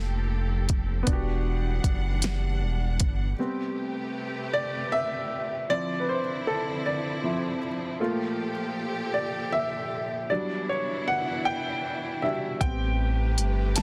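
A slow, straight 6/8 pulse at 52 BPM carries this late-night, sultry R&B fragment in A minor: a soft-kicked, fat-snared electronic drum kit and a deep, round analog bass with ring-modulated colour open the groove over Gm9 and Em9 before dropping away at about 3.3 seconds, leaving a dark, mellow baby grand, intimate enough to reveal its action noise, to take the lead over distant, lush bowed strings with vibrato through rich ninth chords until bass and drums return at 12.6 seconds on Am9, inside a dense, heavily limited master with little reverb.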